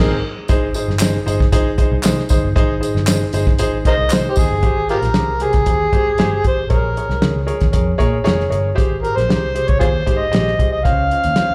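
Uptempo 1960s-style soul at 116 BPM in Ab major, danceable and joyful, heard as a live club set through the venue's PA with light reverb, cut from a longer piece that opens on a band accent before the drums, tambourine and handclaps kick in at 0.5 seconds. A woody upright piano with audible action noise and slapback echo comps throughout over a round, foam-muted picked bass and a dry, dark drum kit with a tight kick, while the shaker and group handclaps drop out around 4.5 seconds. The gritty, overdriven harmonica carries the melody up front with vibrato, scooped notes and tongue slaps, returning at 3.9 seconds for a jazzy solo over Abmaj7, Bbm7 and Dbmaj7 changes.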